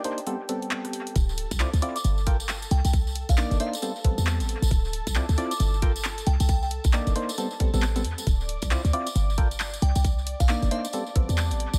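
A swung two-step garage groove at 135 BPM in 4/4 drives this moody, late-night UK garage fragment in D minor, cut from a longer piece. It opens on a short break where an overdriven analog drum machine of handclaps, hi-hat and rim click plays with a warbling, detuned pad and a hollow, wave-folded organ stab coloured by phaser and tape echo. At 1.2 seconds a tight, layered electronic kick arrives alongside a punchy, up-front 808-style bass that pumps against the sidechain, while a jingly, close tambourine adds shimmer through analog delay. From 1.8 seconds a glassy, crystalline FM bell carries the melody in a high register, its bright tone coloured by chorus and analog delay. Throughout, rich ninth chords cycle through Am9, Dm9, Gm9 and Cm9, and the whole mix sits in an echo-heavy digital ambience that deepens the nocturnal mood.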